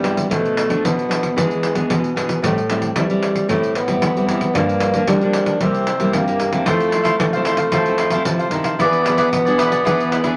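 A straight 4/4 samba-and-choro groove at 113 BPM drives this lively, playful cut from a longer piece: a jingly, up-front pandeiro and two nylon-string guitars, one fingerpicked and full-bodied with finger squeak on accompaniment and the other thumb-plucked in the background on bass, support a breathy, mellow tenor saxophone playing a whispered second line with light vibrato and a soft subtone attack, and a bright, crisp cavaquinho joins them at 6.7 s, all set in a wet club reverb over changes that run Bm7b5, E7, Am7, Gm7, C7, Fmaj7 and back to E7.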